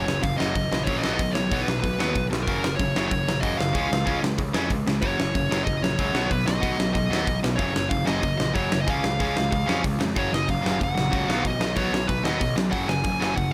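Energetic and rowdy, this punk rock clip charges along at 187 BPM in a straight 4/4, cycling through F#, B and C# chords, with an up-front cranked stack guitar playing a bright, overdriven picked riff over a growly, fuzz-soaked picked bass. A dark, smooth lead guitar carries the melody with overdrive and delay, while a big acoustic rock kit in a bright stone room drives everything with a fat snare, punchy kick and hi-hat placed up front. At 10.2 s a sludgy distorted guitar slips in very quietly beneath with a second picked riff, and the whole mix sits in light reverb.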